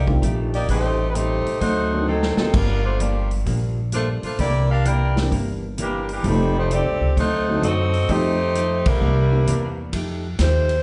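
A clear saxophone section carries the melody up front with tight vibrato, leading this joyful, swinging big band excerpt in F mixolydian at 130 BPM in 4/4. Underneath, a woody upright bass with thumpy gut strings anchors the low end, while a vintage drum kit with a punchy kick and medium-tuned snare drives the swing, marking a drum fill at 2.1 seconds and a band accent at 8.8 seconds. An intimate upright piano, with audible action noise and long sustain, and a clean, compressed hollow-body archtop guitar comp in the background through chords such as F9, D7b9, Gm7 and C9. At 10.4 seconds a breathy alto saxophone steps in over the guitar, bass and drums on a whispered, soft-attack C5. The whole band sits in a recital hall reverb heard from further back in the room, with a mellow, rolled-off top that gives the sound a vintage feel.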